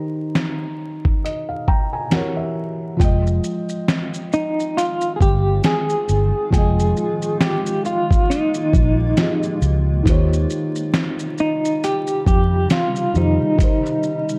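A felt-muted upright piano opens this reflective, melancholic lo-fi hip hop excerpt in F minor, its soft, intimate tone carrying audible action noise and a brief fill from 1.2 to 3.0 seconds, low-pass filtered to sit mellow and dark. A dusty soul sampler-style drum kit joins almost at once, gritty and compressed, with a thumpy kick, fat snare, hi-hat and shaker re-recorded in a large room at a relaxed 68 BPM with a gentle swing on the sixteenths. At 3.0 seconds a round, foam-muted fingered electric bass arrives up front as the harmony settles onto Fm7, later moving to Eb13 before a closing Cm7. From 4.3 seconds a clean, fingered electric guitar carries a narrow melody with tremolo, while a granular cloud pad adds blurred, detuned sustained chords with slow attack and its own reverb. The production is dark and warm, with vinyl crackle, light reverb and digital ambience.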